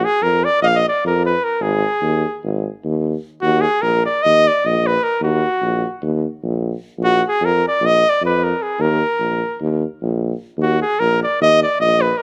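Virtuosic and bittersweet, this short excerpt of Balkan folk in 9/8 at 301 BPM (eighths) and E-flat harmonic minor pairs an up-front, classical-style flugelhorn carrying a clear melody with a vintage-toned tuba holding the bass in a close, detailed recording with light reverb.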